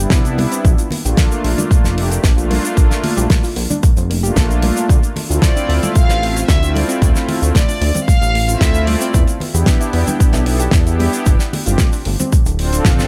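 A punchy, layered electronic kick sits up front in this sunny, feel-good nu-disco excerpt, alongside a dry 70s kit with a fat snare, hi-hat, shaker and toms, bright congas in the background, and a glossy, retro chorused synth bass, while a smooth, detuned analog pad with sidechain pumping and dub echo and a soft, round pluck playing gritty arpeggios fill out the Cmaj7-Gm7-Dm7-Em7-G9sus4 progression, an intimate bowed violin section with light vibrato carries the melody from 5.4 to 9.1 seconds, and a drum fill lands at 12.9 seconds.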